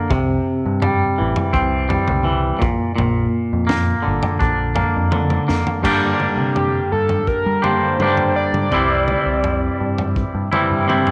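Kaleidoscopic and hazy, this psychedelic rock excerpt moves at 84 BPM in a straight 4/4, built on an up-front, twangy, scooped electric guitar riff with harmonic tremolo over a round, dark dub bass and a crunchy breakbeat kit with a punchy kick, high-tuned snare and rolled-off top. The chords run C, Bb, Gm and C, and a drum fill at 5.5 seconds leads into the second section, where a gritty, screaming synth lead with distortion, chorus and tape echo enters from 6.6 to 9.8 seconds. Light reverb and small room ambience keep the sound close and compact.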